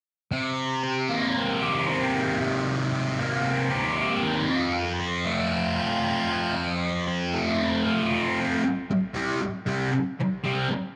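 Rock excerpt at 116 BPM in C dorian, a trippy, hypnotic solo for thick, double-tracked fuzz guitar, bright and up front with phaser and tape echo, picked from F2 to G4 over Cm7 and F before settling on C5 at 8.6 seconds, all set in a wet echo chamber reverb.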